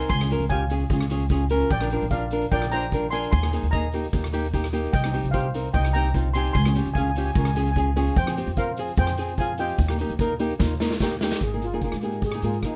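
Lightly reverberant, this carefree, sunny calypso fragment sets a shimmering, mellow steel pan melody, played with soft rubber sticks, over an up-front fingerpicked flamenco guitar, a woody, thumpy pizzicato upright bass on gut strings, a grainy tube shaker tucked in the background, and an airy, polished big-room street-band drum kit with a boomy kick, whose fill from 10.6 to 11.4 s leads into a closing Absus2 chord.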